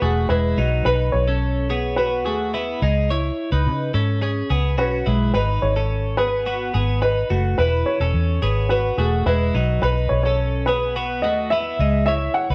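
A slightly detuned upright piano, a twelve-string electric guitar and a muted electric bass start together at 0.0 seconds in this bright, nostalgic fragment of jangly indie pop, moving at a straight 107 BPM in 4/4. The piano carries the melody between G#4 and F#5 with a woody, intimate tone, short sustain and audible action noise. Beside it, the compressed, twangy twelve-string picks clean arpeggios up front. Both the piano and the guitar carry a slapback echo. Underneath, the foam-muted fingered bass sits up front with a dark, round, amped sound, reaching down to E1. A light, small room reverb surrounds the parts as the chords cycle through Eadd9, B and G#m7, then return to Eadd9 and B before landing on C#m at 11.8 seconds.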